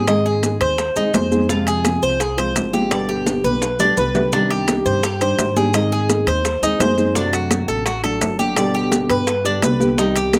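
A bright, metallic Cuban tres picks up-front arpeggios over thumb-plucked classical nylon-string guitar and a woody, thumpy gut-string upright bass, both guitars carrying a slapback echo in this nostalgic, warm Cuban son and guajira cut from a longer piece. Congas, tight high-tuned bongos, grainy maracas and ringing metal-shell timbales join at 0.1 seconds, with a drum fill from 3.3 to 4.3 seconds leading into a repeat of the opening passage. The harmony moves through Ab, Fm and G, then Cmadd9, Ab, D7 and G, in a dry, open-air sound.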